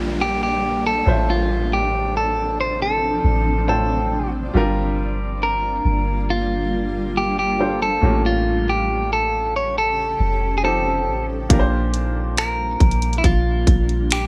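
A lightly reverberant mix opens this late-night, sensual contemporary R&B excerpt in D minor at 69 BPM, where a clean, compressed electric guitar carries the melody up front through a digital delay over a clear baby grand piano with short sustain. A blurred, evolving granular cloud pad holds detuned chords with its own reverb and sidechain pumping, while a round, deep 808-style bass sits forward beneath, and an electronic downlifter drifts in the background until 4.5 seconds. The harmony moves from Bb69 through Dm7/A, Gm7, A7b9b13 and F7 back to Bb69, and at 11.5 seconds a trap drum kit arrives with finger snaps, bright hi-hats and a hard-clipped kick, roughened by vintage 12-bit sampler grit.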